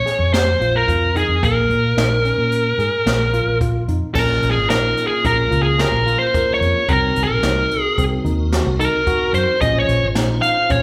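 A fuzzed, compressed lead guitar sits up front from the first instant of this intricate, driving progressive instrumental in 5/4 at 110 BPM in Bb minor, joined at once by clean tine electric piano arpeggios in the background, a brushed drum kit with dark cymbals, high-tuned snare and boomy kick, and a round, amped fingered bass, before a piping, scooped tonewheel organ with key click, chorus vibrato and slow rotary speaker slips in at 4.2 s as the guitar launches into a solo over Bbm7 and Cm7b5 chords, the band captured live in one room with a wet, large 1.2-second studio reverb.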